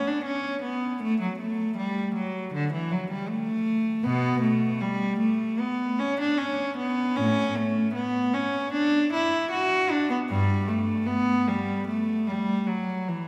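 In a flexible, rubato 4/4, this dance-like, radiant baroque-style suite movement for unaccompanied cello sets a single bowed player up front and close, the gut-string tone rich and reedy in period style as it ranges from G2 to F#4, all bathed in the long, wet reverb of a church across this 13.3-second excerpt from a longer piece.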